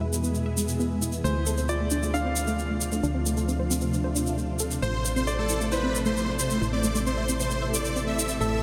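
Soaked in a huge, dreamy reverb, this uplifting trance excerpt feels bittersweet and euphoric. A shimmering, ethereal pad with chorus, phaser and a filter sweep, a lush unison pluck playing arpeggios through analog delay, a punchy, round FM bass and a grainy tube shaker carry the chords from E to Dm7 to Am. A bright grand piano with audible action noise adds a delayed second line from 1.2 s, and at 4.8 s a thick, detuned, compressed supersaw takes the melody up front, echoed by analog delay.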